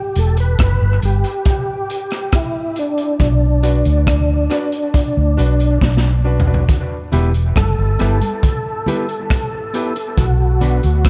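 Dub reggae in E minor at 69 BPM, deep and spacious, this excerpt opens on a break where a clear, lightly overdriven tonewheel organ carries the melody through chorus vibrato, slow rotary speaker and dub echo, over a dark, round, foam-muted fingered bass and a gritty, saturated breakbeat kit with a tight kick, rim click and toms that closes the break with a fill at 5.8 seconds. A brilliant, woody upright piano adds echoing stabs from 3.6 seconds, and from 6.7 seconds soft-handed, high-tuned congas join, followed shortly by a mellow, clean fingered electric guitar with dub echo. The chords move between Em and Bm in an echo-heavy mix, with bass and drums up front.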